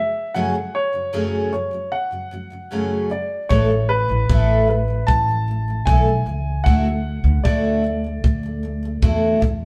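Carefree and heartfelt, this short acoustic pop passage, cut from a longer piece, moves at an easy 76 BPM in a straight 4/4, sounding like a band playing live together in a moderate stone room. A shimmering, octave-doubled fingerpicked twelve-string acoustic guitar and a polished upright piano carrying the melody with long sustain both sit up front from the start. At 3.5 s a growly, woody pizzicato upright bass and a dry, punchy kick drum join as the chords move from F#madd9 to Asus2 and on to Dadd9.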